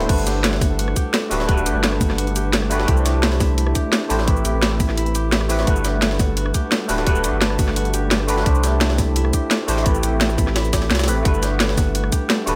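Light digital ambience frames this uplifting, dreamy liquid drum and bass excerpt at 172 BPM in G major, where a barky, gritty tine electric piano through a combo amp with phaser and delay sits up front beside a round, deep sine sub bass, a ringing, fingerpicked concert harp plays arpeggios with digital delay in the background, a tight electronic kick and a drum kit with cracking snare, brilliant hats, cabasa, crash and rim click drive the drop, a compressed, pitched-up jungle sampler-style kit adds high-tuned snare and hats behind them, and very quiet, close, dry congas enter at 0.6 seconds, while the chords cycle through Gmaj9, C69 and Am9.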